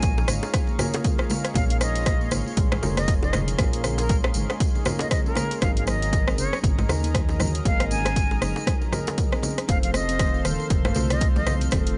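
An airy, bright concert flute carries the melody with vibrato and a soft attack over a driving afro house groove at 118 BPM in Bb minor, swung on the sixteenths, with a punchy, overdriven electronic kick up front and an overdriven deep house kit of hi-hat and rim click. A deep, rumbling detuned saw bass pumps beneath a smooth analog pad with chorus and felt-muted upright piano stabs with audible action noise, while a ringing handpan plays delayed arpeggios from 0.2 seconds, congas and tight high-tuned bongos sit in the background, and a jingly tambourine adds shimmer. The chords move from Bbm7 to Absus2 to F in a small room, and this short excerpt is cut from a longer piece, with the flute stopping at 11.5 seconds.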